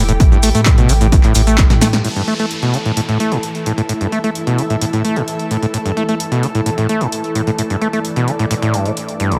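This hypnotic, trippy acid house passage opens on a drop, with a squelchy, resonant overdriven acid bass riff carrying delay, a deep sine sub bass and a lush, detuned unison pad holding chorused, pumping chords, while a punchy analog drum machine's handclaps, hi-hat and snare, grainy maracas and an up-front electronic kick join in until a drum fill and band accent lead into the second section at 2.0 s, where the sub bass and maracas stop, a faint electronic downlifter sounds, and a cloudy, evolving granular pad enters in the background at 3.6 s, all set in light reverb.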